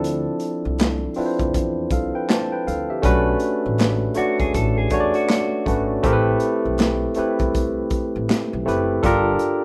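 R&B and neo-soul with an introspective, late-night mood and a swung feel, where a bright, barky tine electric piano sits up front over Dm9, Bm9, Am9 and Gm9 chords, a woody pizzicato upright bass anchors the low end, a gritty, saturated breakbeat kit of tight kick, snare, hi-hat and handclaps thumps with a rolled-off top, and a slightly broken-up electric guitar with slapback echo appears briefly from 4.2 to 6.0 seconds, all in a dry, rough home-demo mix cut from a longer piece.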